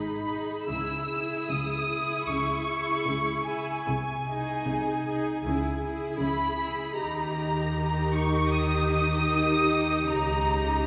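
A string orchestra opens together in a slow, melancholic romantic movement, two violin sections carrying the high melody and a second line over the bowed vibrato of violas, cellos and double basses. The focused viola accompaniment sits up front, while the cellos and basses give a smooth, rich foundation as the rubato phrasing moves from minor chords toward a dominant seventh at 10.1 seconds. A long, wet church reverb wraps the elegiac passage, which is cut from a longer piece.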